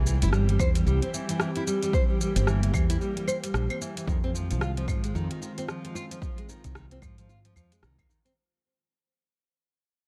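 A dry, close-sounding excerpt of organic downtempo in F minor at 112 BPM, with a mystical, meditative mood and a 16th-note swing, that begins fading out at 2.6 seconds. A round, hollow-body fretless electric bass sits up front with tube saturation and sidechain pumping, under fingerpicked nylon-string guitar arpeggios with finger squeak and delay, while a soft, detuned, breathy pad holds sustained chords with chorus and its own pumping as the harmony moves from C to Fm7. A punchy, overdriven electronic kick enters at 0.6 seconds alongside a deep house kit of claves, metallic hi-hats, rim clicks and shaker in a small room, and a very quiet, deep udu appears at 7.0 seconds.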